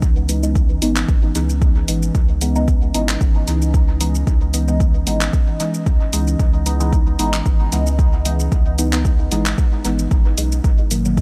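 Meditative and nocturnal, this dub techno excerpt swings gently in 4/4 over a C#m9 chord that shifts to G#m9 near 10.6 seconds. An up-front, overdriven electronic kick anchors a deep house kit of handclaps, hi-hat and shaker with dub echo, while a soft, round sub bass pumps under the sidechain alongside a dark, detuned chord stab that enters at 0.3 seconds with chorus, phaser and echo. Behind them, a warbling, lo-fi tape-like pad holds nostalgic sustained chords in the background, its chorus and built-in reverb contrasting with the otherwise dry, close sound.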